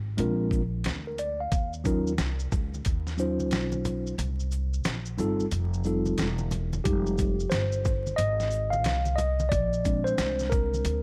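Mellow and nocturnal, this swung 90 BPM jazz-hop excerpt from a longer hip hop piece opens on a woody, dark pizzicato upright bass, joined at 0.2 seconds by a gritty, pitched-down boom bap kit with a thumpy kick and a clean tine electric piano heard through built-in speakers, while bright, dry maracas and congas arrive at 1.5 seconds; the kick drops out briefly before the electric piano takes a solo from 6.9 seconds over seventh and ninth chords, the whole mix set in light reverb and vinyl crackle.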